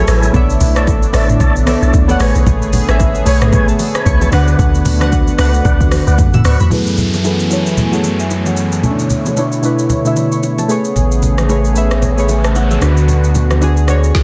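Amapiano at 113 BPM in F# minor with a deep, hypnotic mood, where up-front analog keys with chorus and a low-pass filter play over a smooth, detuned pad that pumps under sidechain, while a lightly overdriven tonewheel organ on fast rotary speaker and delay adds stabs and a percussive log drum bass thumps beneath until 6.7 seconds, all driven by a crisp, woody afro-pop drum kit and dry bongos and congas, before a filter sweep and downlifter come in and a nasal, round analog bass enters at 11.0 seconds in this dense, heavily limited excerpt.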